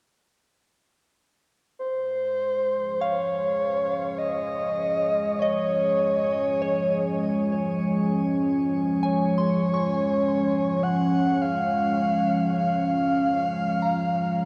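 A slow, straight 50 BPM pulse in 3/4 carries this peaceful, luminous ambient passage in Db major, tuned to A4 = 438 Hz and cut from a longer piece. A breathy, flute-like synth lead opens the melody at 1.8 seconds over a Db chord, sitting up front with vibrato and a noise layer, dressed in chorus, cassette tape character, delay and shimmer reverb. At 2.7 seconds a warm analog pad arrives with sustained chords, its slow attack, sub-octave weight and dark sawtooth-and-triangle tone also placed up front, blurred by chorus and shimmer reverb. A soft, pure FM bell follows at 3.0 seconds with mellow, decaying arpeggios tucked in the background, dressed in chorus, delay and shimmer. The whole piece floats in a huge, wet reverb with a 7.2-second tail and a cassette-tape patina, giving it a hazy, glowing stillness.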